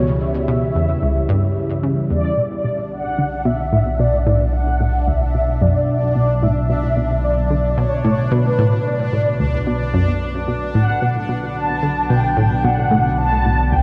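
A hypnotic, expansive stretch of sequencer-driven space music opens with four parts at once: a mellow, horn-like synth lead carrying the melody up front, a round analog pluck riffing low in the register, a fat, saturated bass, and a phased pad holding sustained chords in the background. The lead has a soft attack and vibrato, coloured by ensemble chorus and tape echo, while the detuned sawtooth pluck strikes with a fast attack and decays through its own chorus and tape echo. At 2.4 seconds the harmony moves from C#dim to Bm, and the swirling, airy pad begins fading in under its phaser and chorus. From 2.9 seconds a bright, resonant texture bubbles in with random filter steps and its own reverb. The dark production is bathed in a huge ambient reverb, and the passage is cut from a longer piece.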